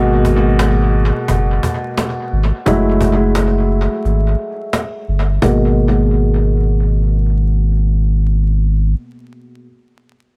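Boom-bap hip-hop at 87 BPM in G# minor with a 63% 16th-note swing and a dark, gritty mood, in which a mellow, woody upright piano colored by cassette tape, analog delay and a filter sweep moves between G#m9 and F#m9 over a round, deep sine sub bass up front, while a snappy, saturated cajon with snares and its own delay stops at 5.6 seconds, set in a small, echo-heavy room with vinyl crackle in this short cut from a longer piece.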